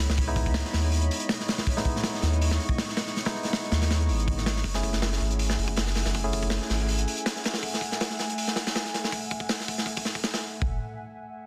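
Crunchy breakbeat drums sit up front in this nostalgic, atmospheric drum and bass excerpt, their gritty, saturated kit sounding like an acoustic set in a studio room, with a tight kick, a medium-tuned snare and a rolled-off top, high-pass filtered throughout. Beneath them a soft, round dub sub bass holds the low end with a fast attack and sustained notes, warmed by tube saturation, before dropping out at 7.1 seconds and returning briefly at the very end. A barky tine electric piano adds clean, direct stabs trailed by dub echo, playing until 7.7 seconds. Behind everything, a warbling, lo-fi pad of detuned tones carries sustained chords with a slow attack and long release, its chorus, built-in reverb and vintage 12-bit sampler grit giving it a mellow, tape-like haze. The harmony moves from C#m9 to F#m9 at 4.6 seconds, and the whole piece sits in a small room with light reverb under a dense, heavily limited modern master.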